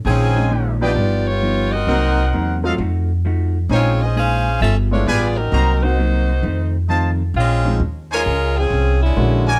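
Sultry and dramatic, this swinging jazz excerpt in Bb minor moves at 132 BPM in 4/4, cut from a longer piece and built on a dark minor progression of Bbm11, G7b13, Cm7b5 and F7b9 that comes around again with G7b9 and F7 before returning to Bbm11 at 7.3 seconds. A bright, up-front saxophone section carries the melody with jazz vibrato, while a tight, bright trumpet section punctuates it with stabs. Underneath, a woody, growly upright bass, plucked pizzicato on steel strings, sits prominently in the mix and anchors the low end. A clear baby grand piano adds intimate accompaniment, its natural tone carrying audible action noise, and a clean, picked hollow-body electric guitar with a compressed, vintage warmth comps alongside it until it drops out at 7.2 seconds. Light reverb and close, detailed miking keep the ensemble present and immediate.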